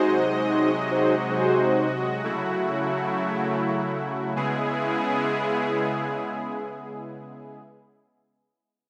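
This energetic, driving pop excerpt opens with a mellow synth brass voice, round and brassy with a dark, chorused sheen and vibrato, over a soft supersaw holding sustained chords, both sitting up front. The brass drops away at 1.9 s, leaving the smooth, evolving supersaw to carry the harmony through G#7, F#m7 and C#m7 until it stops at 7.6 s. A lush hall reverb gives the sound a moderate sense of space.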